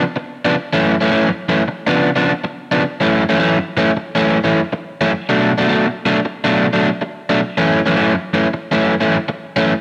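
An overdriven electric guitar plays alone and up front through this soulful, mournful blues fragment cut from a longer piece, its picked tone bright and compressed over a swung 4/4 feel. The harmony moves from C#7b9 and F#m7 into a longer passage at 2.8 seconds that visits Bm7 before settling back on F#m7. A moderate echo-chamber reverb gives the guitar a sense of space around it.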